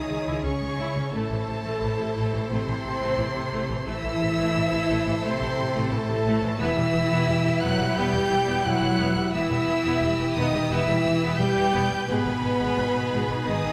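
A steady, straight 4/4 pulse at 88 BPM carries this cinematic, epic orchestral film-score passage, cut from a longer piece, with a dark yet heroic mood moving through C#m, Am, Em and G#m. A warm violin section sings the bowed melody high above, with soft attacks, expressive vibrato and a smooth top, while a second, clear and close violin section holds a supporting line in the background. A hollow, airy flute section with crisp attacks adds its own second line, and a French horn section supplies clear sustained chords with light vibrato in a classical style. Beneath them, a lush viola section fills out the accompaniment, and a focused cello section and a rich double bass section, entering at 0.1 s, anchor the bass. The whole ensemble sits in a wet scoring-stage reverb that gives the strings and brass a broad, cinematic bloom.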